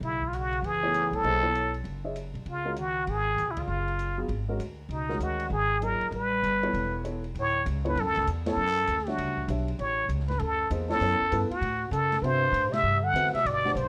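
Searching and spiritual, this modal jazz excerpt swings at 196 BPM, with a raspy, growling plunger-muted trumpet up front carrying the melody in wah-wah scooped notes while a mellow, close-miked bass clarinet sits in the background on a second line. A woody upright bass plays pizzicato on gut strings, an open drum kit with dark cymbals and a boomy kick keeps time, and a long-sustaining upright piano joins the accompaniment at 0.8 seconds, with the band hitting accents at 3.5, 8.4 and 12.7 seconds. The harmony drifts through suspended and ninth chords in a rough home demo sound with light reverb and small room ambience.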